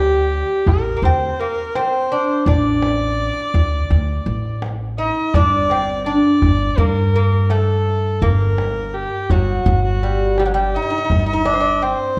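Hypnotic and longing, this fragment of a Persian modal ensemble piece places a delicate, fingerpicked gut-string lute up front over a woody, growly pizzicato upright bass, while a clear, biting kamancheh carries a second line with light vibrato and portamento, a tight tombak played with hard hands joins at 0.7 s, and a moderate recital-hall reverb surrounds the group in a dark, warm production as a new section begins at 5.3 s.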